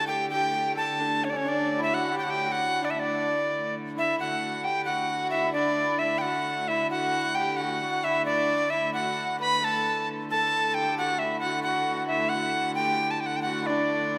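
A steady 6/8 pulse at 88 beats per minute, counted in dotted quarters with a straight feel, drives this festive, ancient-sounding medieval dance in D major, cut from a longer piece. A breathy alto recorder carries the melody up front, its wooden, reedy tone bright with gentle vibrato and a soft attack, close-miked so it sits nearest the listener. Beneath it, a shimmering hammered dulcimer rings out a second line, joined by a single fiddle in the background whose airy bow and gut-string tone add a reedy warmth. A lone hurdy-gurdy holds a low drone from a distance, its wheel-bowed sound both clear and biting with an earthy edge. All four parts play throughout, with the opening section giving way to a new one at 4.2 seconds, and a moderate concert hall reverb with a 2.4-second decay surrounds the ensemble.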